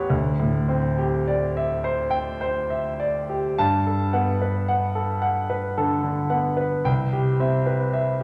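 A clear concert grand piano opens alone at 0.0 s on a suspended D9sus4 chord, setting a hazy, luminous mood in this short impressionist classical fragment cut from a longer piece. The tempo drifts around 50-56 BPM in a slow 3/4 with a rubato feel, and the music rests in G major, tuned to A4 = 439 Hz. Near 3.6 s the harmony settles onto a Gmaj9, opening a second passage that moves to a Cmaj7 at 6.9 s before the fragment ends. The piano ranges from C2 to A5, its tone natural and up front with a deep bass. A wet recital hall reverb, with a 1.7-second decay, gives the slow chords a soft glow that hangs in the air.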